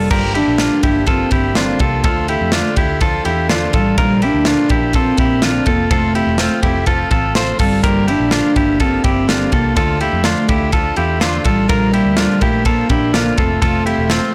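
A hollow, woody synth lead with chorus carries the melody from the first moment over a fingerpicked steel-string acoustic guitar in the background, twangy clean electric guitar arpeggios with digital delay, and a dark, foam-muted picked bass, with a punchy, polished studio drum kit coming in at 0.1 s, in a bittersweet, restless jangly indie pop excerpt at 124 BPM that cycles through Gm7, Dm, Bb and F in a blown-out, overdriven recording with light reverb.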